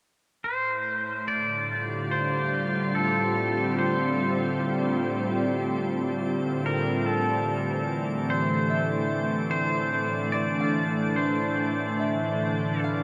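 A vast, echoing space surrounds this serene ambient excerpt, its reverb trailing on for nearly eight seconds, cut from a longer piece at a slow 72 BPM in straight 4/4 in D minor, tuned slightly flat of standard pitch. A pure, detuned organ-like pad sits up front with a slow attack and long release, holding a single Dm9 chord through its ensemble chorus. Also up front, a bright, twangy pedal steel guitar carries the melody from 0.4 seconds, played with fingerpicks, slide and volume swells, its clean, compressed tone spread by a diffuse ambient delay. In the background, a glassy texture of drifting sine overtones, treated with chorus, fades in high above the pad. A fingerpicked concert harp fades in with ringing acoustic arpeggios from 1.3 seconds, sent through its own diffuse delay and heard at a distance.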